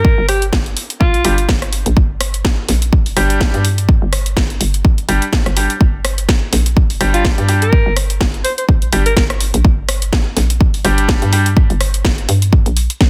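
A bass house groove at 125 BPM in 4/4 drives this swaggering, gritty clip from a longer track, with a 56% swing on the 16ths and a G minor key centre. The punchy electronic kick sits up front and tape-warm, joined almost at once by a layered house kit of hi-hat, rim click and cracking snare, both re-recorded in a large room. Underneath, a hollow, bouncy FM bass with a fast attack and mellow decay knocks between G1 and G2, pumping through sidechain compression. A clear alto saxophone in a vintage jazz style opens the clip over a G5 chord, with light vibrato, subtone and scooped notes colored by 12-bit sampler grit and digital delay, then returns at 7.1 s. From 1.2 s a brilliant, intimate grand piano adds stabs with audible action noise, also pumping and trailing digital delay. The dense, heavily limited modern master is wrapped in a digital ambience.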